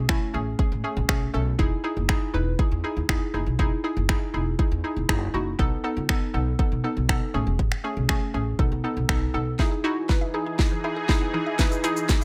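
This carefree, summery dance-pop clip opens with a hollow, bouncy square-wave pluck playing a detuned, chorused accompaniment up front, with a thumpy upright bass on dark gut strings beneath it, both breathing with sidechain pumping. A punchy electronic house kit comes in almost at once, carrying a cracking snare, metallic hats, finger snaps and shaker at a steady 120 BPM in a straight 4/4. The harmony moves through Amaj7, Emaj7 and B7 in E major, all set in a digital ambience. The bass stops at 9.5 seconds. At 9.6 seconds a build-up with a drum fill begins, as an airy, evolving supersaw swell enters with soft-attack sustained chords and a round, mallet-like FM pluck adds bright, delayed arpeggios in the background, both pumping with sidechain compression.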